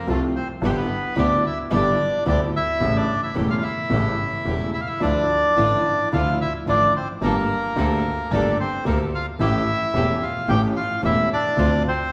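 A reverberant hall sound surrounds this dramatic, melancholic tango, cut from a longer piece and taken at 110 BPM in D minor with a rubato feel, where a reedy, vintage bandoneon carries the melody up front over a dark, mellow baby grand piano accompaniment with long sustain, a rich double bass bowed smoothly with vibrato by one player, and soft-edged sul tasto stabs from a chamber string section in the background, moving through chords such as A7, Dmadd9 and Gmadd9 before arriving on Dm7.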